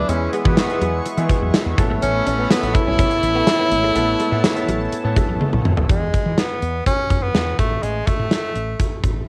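A gated 1980s drum kit drives this short, nostalgic and uplifting pop fragment at 124 BPM in a straight 4/4, its punchy kick and medium-tuned snare sitting up front in a big gated room, with hi-hat, tambourine and toms filling out the beat and a drum fill arriving at 5.4 seconds. Underneath, a dark, round fretless electric bass with a woody, hollow-body character holds the low end from the start. A bright tenor saxophone carries the melody in a pop style with light vibrato and analog delay, standing out as the lead. For the first 5.9 seconds, a clear concert grand piano with audible action noise plays accompaniment, a shimmering, detuned pulse-width pad sustains chords in the background with a slow attack and chorus, and a very quiet, compressed clean electric guitar picks a scooped riff. When the music settles into E major at 5.9 seconds, only saxophone, bass and drums remain, the harmony dropping out at 7.6 seconds. 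Light studio reverb and the soft grain of a home cassette recording give the whole fragment a retro, homemade glow.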